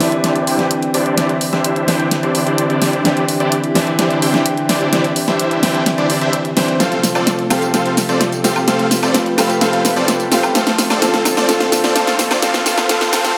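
A euphoric, uplifting festival progressive house build-up at 128 BPM in C major opens at once with bright, detuned supersaw chords under a sweeping low-pass filter and tape echo, a clear, boxy grand piano with audible action noise and tape echo, a warbling vintage chorused pad sweeping in the background, and a layered electronic drum kit of hi-hat, tambourine, woodblock and an up-front snare playing a continuous fill, all moving through Cadd9, F and Dm in a lush hall reverb, until a very quiet riser joins at 10.3 seconds in this short cut from a longer piece.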